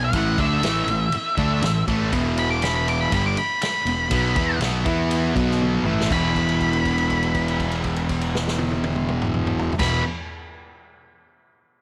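Blues rock in the power-trio mould with a southern rock streak, this short excerpt from a longer piece is driving and raunchy in a straight 4/4. Up front, a bright, double-tracked fuzz guitar plays the riff over power chords moving among A5, E5 and B5, while a growly, overdriven fingered electric bass holds down the low end. Above them, an octave-fuzz lead guitar with a darker, distorted tone carries the melody. An acoustic vintage drum kit with a punchy kick, medium-tuned snare, toms and dark, rolled-off cymbals sits in a natural small-room ambience. A drum fill at 5.6 seconds leads into a second section at 6.1 seconds, where a held note rings until 9.8 seconds.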